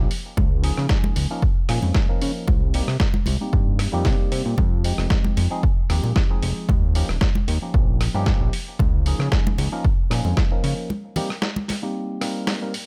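Sleek and cosmic, this nu-disco excerpt moves at 114 BPM in a straight 4/4, cut from a longer piece. A fat, thick analog bass with a detuned, wave-folded sawtooth edge and a filter sweep sits up front, pumping against an electronic kick that is punchy and tape-warm. Around them, a gritty, compressed sampler-style soul kit supplies hi-hat, rim click and a medium-tuned snare in studio reverb, while close, dry congas are struck with hard hands. A worn, slightly out-of-tune tine electric piano, barky and lightly overdriven through a combo amp, carries the chords with phaser, low-pass filter and delay, moving through Db69, Cm7, Fm9 and Eb9 before returning. The kick drops out at 10.5 seconds and the bass at 10.7, opening a break from 10.9 seconds where the piano, kit and congas carry on briefly in a mostly dry, close-sounding mix.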